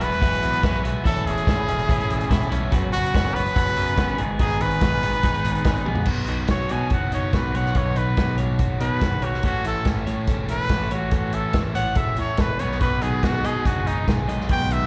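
A straight 4/4 pulse at 143 BPM drives this jangly, wistful indie rock piece, heard live through a club PA, where a dark, rolled-off vintage drum kit with a punchy kick plays a fill at 5.9 seconds before a bright, up-front trumpet with vibrato, slapback echo and plate reverb takes a solo from 6.1 seconds over a twangy, compressed twelve-string electric guitar riff, a scooped high-gain guitar riff with subtle chorus set in the background, and a growling overdriven picked bass, as the harmony moves from Eadd9 through Badd9 to G#m.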